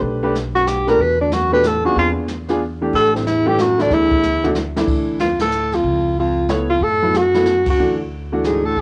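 Sophisticated and swinging, this short cut from a longer small-group jazz piece moves in a lilting three, with an up-front, vibrato-rich alto saxophone carrying the melody from 0.6 s while a subtoned baritone saxophone sings a second line in the background. A clear, woody upright piano comps beside a pizzicato steel-string upright bass and a brushed drum kit with dark cymbals and a boomy kick, which plays a fill at 4.2 s before the second section brings band accents. The home cassette recording has a dulled, rolled-off top and light reverb, lending the whole performance an intimate, lived-in glow.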